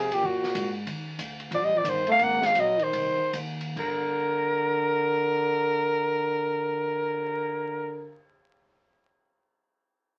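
Cool and swinging, this short fragment of small-group swing and bop in G minor moves at 132-189 BPM with a swung 4/4 feel, and it slows down between 0.9 and 3.8 seconds before the harmony settles on G minor. A close-miked soprano saxophone carries the melody up front with vibrato, subtone and scooped notes, while a punchy, forceful trombone plays a second line beneath it. A woody pizzicato upright bass and a quieter open drum kit, with dark cymbals, a high-tuned snare and a boomy kick, sit further back in a small room, all heard through the crackle of a very old 78 rpm record.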